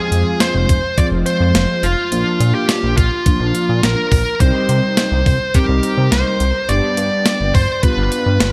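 A clean 12-bit drum machine plays a straight 105 BPM pulse in 4/4 with a thumpy kick, medium-tuned snare and hi-hat, alongside a glossy, chorused synth bass in this cool, nocturnal synth-pop excerpt in C minor. Mellow, detuned synth brass with vibrato fills out the dark, round middle over the Fm, Bb, Cm and G changes. Up front, a bluesy overdriven electric lead guitar carries the melody through distortion and digital delay, all set in a light reverb.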